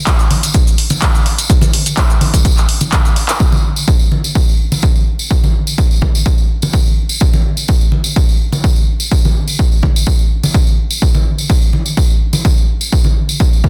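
Driven by a straight pulse at 126 BPM, this energetic yet bittersweet house excerpt is cut from a longer piece and built entirely on rhythm. A punchy analog electronic kick drum sits up front and runs throughout, its thump carrying the faint air of a large room. Alongside it, an analog drum machine supplies handclaps, hi-hat and shaker for the opening 3.4 seconds, and a drum fill from 2.9 seconds closes that stretch before the machine drops away. Tambourine and congas played with hard hands continue from the start to the end at 13.7 seconds, sounding acoustic and distant, as if heard across a spacious hall. The mix stays dry and dense, with a heavily limited modern master that keeps the groove pressed and loud.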